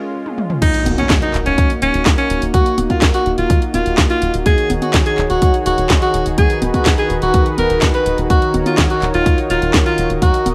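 Danceable and melodramatic, this italo disco passage opens on a brief break in which a mellow, chorused analog pad holds sustained chords and a house drum kit plays a fill from 0.3 s. At 0.6 s a bright, up-front alto saxophone takes the solo melody in a pop style with light vibrato and tape echo, over a tight, dark sequencer bass with a detuned sawtooth tone and filter pluck, a punchy electronic kick, and an electronic impact in the background that lasts until 2.5 s. The kick and the house kit both carry overdrive, and the kit's cracking snare, handclaps, congas, toms, hi-hats and crash cymbal sit in light reverb.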